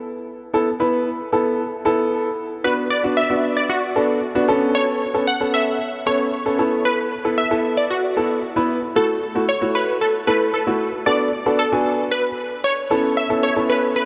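A detuned, sawtooth-edged unison pluck carries the melody from 2.6 s, its bright, punchy lead colored by phaser, delay and a filter sweep in this carefree, upbeat pop fragment. Beneath it, an intimate grand piano with audible action noise plays the accompaniment from 0.5 s, sitting up front over chords that move from Esus4 through D6, Aadd9 and F#m7. A huge ambient reverb soaks the whole mix in a dreamy wash, and the passage breaks off at 14.1 s.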